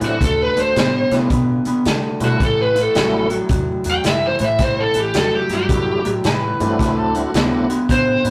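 A rough rehearsal-room recording with tube saturation and a moderate stone-room reverb frames this soulful, swaggering electric blues shuffle at 109 BPM, cut from a longer piece and moving over D9 and A9 chords. An up-front lead guitar through a small cranked amp sings a dark, overdriven melody over a slightly broken-up, lo-fi rhythm guitar riff, a woody, thumpy pizzicato upright bass, and a vintage kit with a tight kick, medium-tuned snare and hi-hat that sits up front with a rolled-off top. A full tonewheel organ with slow rotary speaker and chorus vibrato plays until 7.7 seconds, and a gritty amplified harmonica slips in at 6.3 seconds with scooped notes and tongue slaps.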